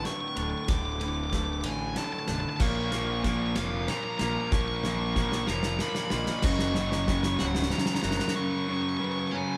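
Post-rock in a slow 6/8 at 62 BPM, cinematic and hopeful, this short excerpt is one long build-up over D, B-flat minor and F-sharp chords, with a loose, up-front indie drum kit playing a fill until 8.4 seconds, a growly fuzz bass, a hollow-bodied overdriven semi-hollow guitar riff with spring reverb, a cranked stack guitar joining at 2.6 seconds with a bright second riff, a dark overdriven lead melody on top, a very quiet pedal steel, and a very quiet twangy clean guitar's arpeggios, with mellow soft-mallet vibraphone arpeggios glowing in the background, all played live together in a large studio room.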